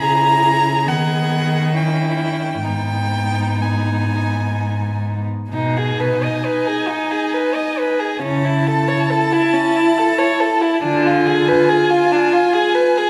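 Classical slow romantic movement for string quartet in G# minor, melancholic and yearning, unfolding with rubato in 3/4 at 61-71 BPM, where two rich, intimate violins carry the melody and a second line with light vibrato, soft attacks and airy sul tasto bowing; a warm viola shapes the accompaniment, and an up-front, close cello holds the bass until 11.6 s, the quartet heard in a moderate recital hall reverb in this passage cut from a longer piece.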